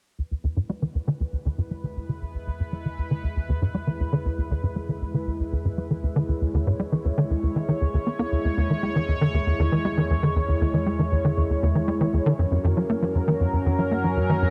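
A straight 4/4 pulse at 118 BPM drives this cosmic, luminous ambient excerpt in E lydian, where a tight, punchy sawtooth sequencer bass plays a riff from 0.2 s with a fast filter pluck, ensemble chorus and delay, shaped by a filter sweep. Above it, a sweeping resonant pad fades in on bright, detuned sustained chords with a slow filter swell, and from 1.8 s a very quiet analog drone adds pulse-width-modulated depth, with the harmony moving from E to F# at 12.4 s. A huge ambient reverb and a cassette-tape grain wrap the whole passage.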